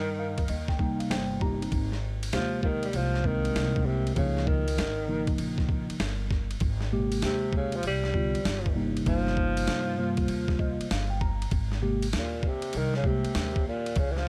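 Lightly reverberant and smooth, this jazz-hop excerpt rides a swung hip hop groove built on a gritty, compressed boom bap drum kit with a thumpy kick, pitched down and up front. Woody pizzicato upright bass and a mellow, clean tine electric piano carry the chords, with the piano adding fills at the start and again at 10.3 seconds. Over them, a breathy tenor saxophone plays a whispered, intimate subtone melody with vibrato, scooped notes and a touch of analog delay.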